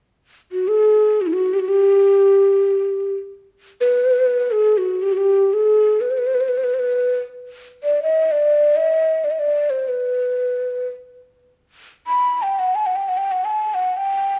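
Persian music in free time and the dastgah of chahargah on G, tuned to A4 = 441 Hz: a passionate fragment cut from a longer piece, in which a breathy, hollow, up-front end-blown reed ney plays the melody with a straight, tongued tone from 0.5 s to 14.4 s, ranging from Eb4+49c to B5 and set in a moderate recital hall reverb of 1.5 s.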